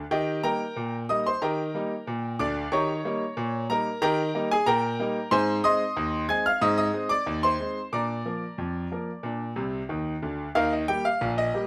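Cheerful and lively, this short ragtime piano excerpt moves at 92 BPM in a straight 2/4 feel in Eb major, cut from a longer piece. A single concert grand piano plays solo throughout, spanning from Bb1 up to Ab6, with a brilliant, up-front tone, deep bass and long sustain. The harmony travels from Eb through Eb7, Ab and Bb before settling back on Eb at 10.5 seconds, where a new section begins. Just before that arrival, a piano fill from 9.6 seconds bridges the two passages. A moderate studio reverb gives the instrument a natural sense of space around its sparkling sound.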